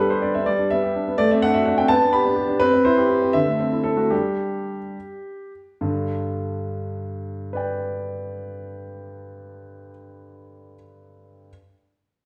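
A solo concert grand piano opens this short cut from a classical-period sonatina, its lilting compound metre and free, rubato phrasing giving a cheerful, playful character. The instrument sounds intimate and smooth, with a vintage quality, deep bass and the mechanical noise of its action clearly audible. From 1.9 seconds the pace eases back as the harmony moves through gentle cadential chords, and a fresh, brief section begins at 5.8 seconds before the piano finishes at 11.5 seconds. A stone room reverb lends a lingering sheen, placing the listener a little further back in the space.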